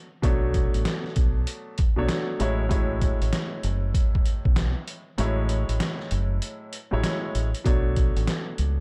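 Dry, dark and gritty, this short cut from a longer boom-bap hip-hop track moves at 97 BPM in F# minor with a 63% swing on the 16ths and a moody feel. A tape-worn grand piano accompanies through Bm7 and F#m7 chords from the opening second, dulled and filtered at both ends. A round, deep fingered electric bass and a compressed, pitched-down sampler kit sit up front from 0.2 s, the thumpy kick dropping out between 5.2 and 7.7 s beneath the hi-hat and medium-tuned snare.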